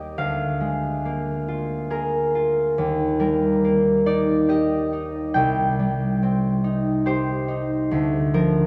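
A cathedral reverb with a 5.0 s decay surrounds an up-front concert harp, along with some small-room ambience. This dreamy, graceful classical excerpt in Eb major moves in a rubato 3/4 at about 70 BPM, the solo harp fingerpicked and ringing across a range from C2 to G5. Its harmony drifts from Bb7/D through Eb and Cm to Bb/D over 8.7 seconds, cut from a longer piece.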